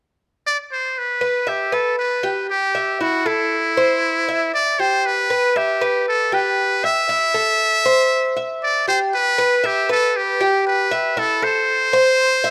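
A straight 4/4 Latin groove at 117 BPM sets a sultry, danceable mood in E minor, in this short passage cut from a longer piece. A trumpet with a metal mute carries the melody from 0.5 seconds, its brilliant, buzzy, thin tone shaded with light vibrato and a soft attack, played in a jazz style as the up-front solo voice. From 1.2 seconds a Cuban tres joins with picked arpeggios, its mellow yet metallic acoustic sound ringing from double strings, some of them octave-doubled. Both parts sit up front and share the same span from E4 to E5, moving through a simple alternation of Em and Am chords. A moderate plate reverb lends the pair a sense of space, and around 9.1 seconds the music shifts into a new section that runs to the close at 12.5 seconds.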